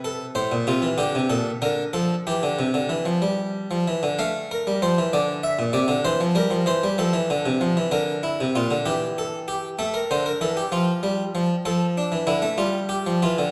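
A solo harpsichord in the Italian style carries this short classical passage, a baroque-style two-part invention in 6/8 with a straight feel and a contemplative, solemn mood. Its single set of strings sounds plucked, round and full, captured close and up front, while the recital hall around it adds a long, wet reverb. The instrument plays alone from start to finish, ranging from A2 up to F5 and tuned slightly below modern concert pitch at A4 = 438 Hz. An opening idea gives way to a contrasting passage at 4.2 seconds, then returns at 7.9 seconds, with the harmony moving through chords such as Bbmaj7, C7/E, Emadd11 and Am. The piece is cut from a longer work and stops on a bare G5 sonority at 12.6 seconds.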